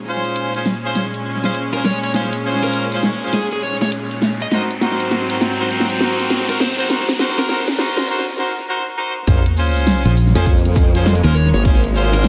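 Swaggering and playful, this glitch hop cut in Bb minor struts at 101 BPM with a swung 16th feel, as warm bowed strings hold Bbm7 and Ab7 chords under brilliant horn stabs that pump, filter and echo, while a pop drum kit with a fat snare and hi-hat runs a fill through most of the build-up and a dark, overdriven lead guitar sits in the background with a tape-echoed melody. A riser enters at 3.2 s and climbs toward a short break, then the drop at 9.3 s lands with an impact, a punchy electronic kick, a grainy cabasa and an up-front, saturated formant-sweep wobble bass, joined briefly by a direct fingered electric bass. The echo-heavy mix sits in a moderate plate reverb.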